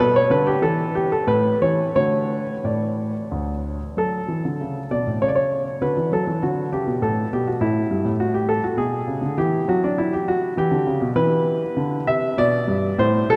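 A clear, intimate grand piano, up front with audible action noise, plays alone in this radiant, serene baroque-style suite movement in D major and 3/4, moving with rubato at 87-104 BPM and tuned to A4 = 436 Hz, its chords drifting from Bm through D to Em9 and Em inside a dark production bathed in wet cathedral reverb over this 13.4-second cut from a longer piece.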